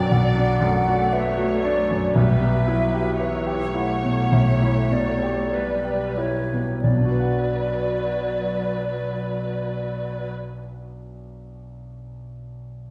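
Classical chamber music in B minor, brooding and passionate, moves in a rubato 4/4 between 44 and 61 BPM, slowing over the first 6.8 seconds as the clear, up-front concert grand piano carries the melody with deep bass and long sustain, a close-miked silver flute adds a pure, hollow second line with vibrato before falling away with the distant, bowed viola section and its portamento at 10.3 seconds, and the piano rings on alone in the church-like reverb of this brief passage, cut from a longer piece.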